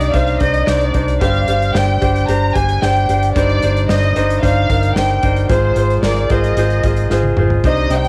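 A straight 4/4 pulse at 112 BPM drives this dramatic, driving piano-driven pop passage in C minor. A bright upright piano with audible action noise and long sustain carries the accompaniment, and a distant, bowed violin section sings the vibrato-rich melody, both colored by cassette tape. Beneath them sit a round, foam-muted electric bass and an airy country drum kit with a punchy kick, which plays a fill from 7.1 to 7.6 seconds. The whole home cassette recording is set in light reverb.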